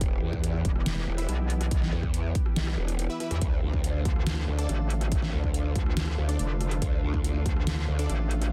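A growling, saturated bass sits up front through a formant filter, soon joined at 0.6 s by a metallic FM wobble bass, to drive this chaotic, heavy half-time dubstep excerpt. Beneath them, a lush, detuned vintage pad sustains chords moving from Em to Dm at 3.4 s with chorus and sidechain pumping. A punchy overdriven kick and a kit of deep snare, rim click and metallic hats hold the beat, while faint supersaw stabs with tape echo enter at 1.2 s, all in a dry, dense, heavily limited mix.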